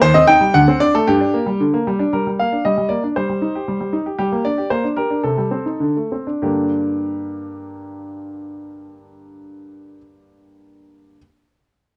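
Heard through worn, warbling old cassette tape with light reverb and a drifting pitch, this restless yet elegant classical-period sonatina fragment in G minor moves in a straight 2/4 at 94-118 BPM, its clear, smooth, vintage grand piano placed up front as the solo voice from 0.0 to 11.2 seconds, ranging from D2 to G5 and slowing between 3.7 and 6.4 seconds before settling back onto G minor.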